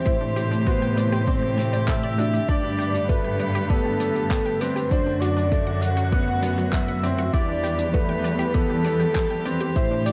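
Piano and strings electronica with a tender, hopeful mood, moving at 99 BPM in a straight 4/4, this excerpt is cut from a longer piece and cycles through Am7, Gadd9, D/F# and Em. A velvety synth lead carries the melody from A4 to F#5, its detuned sawtooth and sine layers sitting over a sub octave, with chorus, vibrato and tape echo smoothing its sustained tone. Beneath it, a grand piano with a boxy, long-sustaining sound plays a riff touched by tape echo, while an intimate string quartet holds soft-attack, airy sul tasto chords that pump with sidechain. A dark symphonic cello section supplies the bass with expressive vibrato and portamento, also pumping, and a detuned, ring-modulated unison pluck traces arpeggios in the background from 0.1 seconds, washed in tape echo. A deep, layered electronic kick sits up front, paired with a quieter acoustic brush kit adding handclaps and hi-hat, all set in light reverb and a small room ambience.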